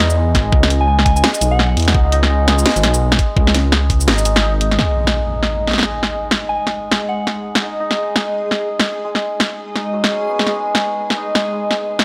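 A dark, detuned saw bass rumbles up front from the start, deep and beating, driving a tense, cinematic stretch of half-time drum and bass at 169 BPM in G# minor, cut from a longer piece. A hammered santur ringing with a shimmering tone plays arpeggios throughout, softened by a low-pass filter and trailed by analog delay, while the drum kit's cracking snare, hi-hat and shaker sit prominently over a swung half-time groove. A knocking electronic kick joins briefly until 4.0 seconds, and a soft, pure FM bell with chorus, phaser and delay drifts in the background with short melodic phrases. The drop gives way at 4.8 seconds, where the bass stops and an electronic impact lands. From 5.6 seconds a reversed, dreamy granular texture swells in the background with its own reverb, lending a bright haze to the dry, gritty sound with its light room reverb.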